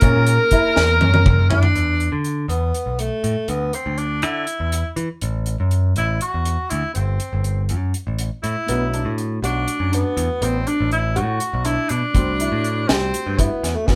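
Recorded as a band playing live in one room with moderate studio reverb, this brooding, tense progressive instrumental moves in 7/8 at 242 BPM (eighths), carried by a dry, up-front reggae drum kit with a high-tuned snare and tight kick, and a bright, direct picked electric bass. A clear tenor saxophone with light vibrato plays the jazz-style melody throughout, while a smooth-topped alto saxophone holds a second line only until 1.5 s, during a drum fill that leads into the next section. A warm grand piano with deep bass and short sustain plays arpeggios alongside a very quiet, clean tine electric piano heard through a combo amp; both drop out early and return at 8.7 s over chords moving from F#7 through Am7 and Bm7 to C6.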